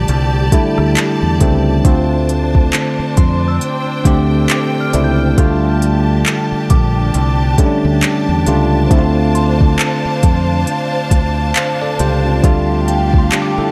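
An overdriven, up-front electronic R&B drum kit of soft kick, crisp hi-hat, rim click and handclaps sets a slow, swung 68 BPM groove in D minor for this longing, sensual contemporary R&B excerpt alongside a barky, bell-like tine electric piano, a direct fingered electric bass and a lush bowed string section with intense vibrato, all moving between F69 and Dm7 under light reverb, while a glassy, crystalline FM synth bell with chorus and diffuse ambient delay enters in the background at 3.2 seconds.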